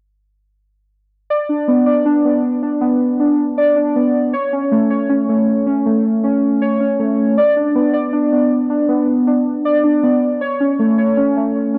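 Warbling lo-fi synth keys, mellow and nostalgic with a chorus and analog delay sheen, play melancholic, dark arpeggios up front from 1.3 to 11.8 seconds over a B minor to A progression in this half-time hip hop excerpt at 158 BPM, cut from a longer piece and heard through light reverb with the character of a home cassette recording.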